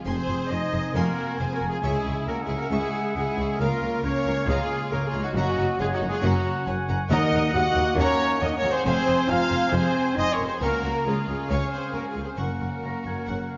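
A rich, lush viola section carries the accompaniment in this heroic, triumphant adventure film cue, cut from a longer piece, while a clear, distant violin section sings the melody in the background and a very quiet second violin section with a smooth top adds a higher line. Mellow French horns hold roomy sustained chords, a mellow solo trumpet punches out stabs, a very quiet ringing harp spins fingerpicked arpeggios, and airy flute, warm oboe and dark, soft-attacked clarinet weave second lines behind them. Even, smooth cellos and double basses anchor the bass, a round, close timpani stroke lands at 7.1 s, and the whole orchestra sits in a wet scoring-stage reverb.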